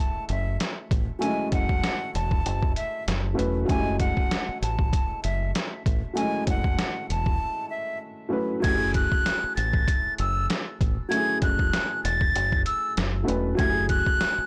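This is a gritty, tough boom-bap hip-hop piece at 97 BPM in 4/4, with a swung sixteenth-note feel, centred on F# minor and cut from a longer work. A breathy silver concert flute carries the melody up front, close-miked with a straight, expressive tone and a tape echo trailing its high phrases. Beneath it, an intimate grand piano plays accompaniment with smooth, vintage colour, short sustain, audible action noise and a cassette-tape texture, opening on an F#m9 chord. From 0.3 seconds a deep, round dub fingered electric bass sits low and dark with tube saturation, alongside a compressed, pitched-down sampler-style trip hop drum kit with a thumpy kick, medium-tuned snare, hi-hat and crash, roughened by 12-bit sampler grit and re-recorded in a small room. A break arrives at 7.4 seconds before the second section begins at 8.6 seconds. The whole mix is blown-out and overdriven, with light reverb.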